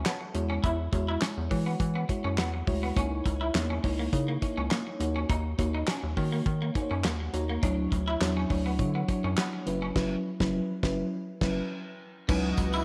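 An up-front FM electric piano, dreamy and full-bodied with a soft pad layer, chorus and tremolo, carries this slick, funky fragment of early-eighties boogie funk in C# dorian at 103 BPM, cut from a longer piece. Underneath, a rubbery, nasal square bass bounces along, while a damped 70s drum kit sits up front with a fat snare, tight kick, hi-hat, handclaps and crash cymbal. A clean electric guitar plays a picked riff with tube saturation and subtle chorus, and the electric piano breaks into a fill at 6.5 seconds. The chords move from E69 through C#m69, D#m7, Dmaj9 and F#7sus4, with a band accent from 10 seconds toward the close. At 12.3 seconds a thick, airy unison pad with chorus and a jingly tambourine in the background arrive on a final C#m11, all set in a moderate plate reverb.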